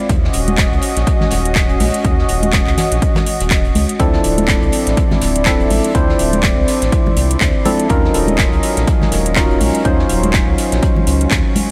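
A hollow, organ-like stab sits up front from 4.0 seconds, its percussive sine-and-triangle tone carrying a noise layer, chorus, tape echo and sidechain pumping over a late-night deep house groove at 123 BPM in 4/4 with a 16th-note swing. Underneath, a smooth, detuned sawtooth pad holds sustained chords with a slow attack and chorus, pumping against the beat as the harmony moves from Ebm7 to Dm9 at 4.0 seconds and on to Ebm9. A round, dark analog bass with a ring-modulated, evolving character anchors the low end, also breathing with sidechain pumping. The punchy electronic kick and a layered house kit with handclaps and metallic hats are both overdriven and re-recorded in a large room, while a very quiet acoustic soul kit adds hi-hat and a medium-tuned snare with a rolled-off top. Bright congas sit close but in the background, and light reverb with studio ambience frames this brief cut from a longer piece.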